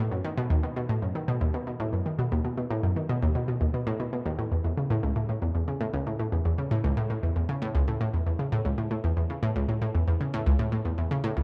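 Cosmic and expansive, this ambient passage is cut from a longer piece and moves in a straight 4/4 pulse. A lone analog pluck carries the whole 11.4 seconds, sitting up front in a low register from C#2 to D#3. Its sound blends sawtooth and square waves, detuned and layered with noise, giving each note a fast attack, a short decay and a round yet bright edge. Chorus and tape echo thicken the pluck, and a wet plate reverb with a 2.6-second tail opens up a deep space around it. The production is dark, letting the synth's warmth glow against a shadowy backdrop.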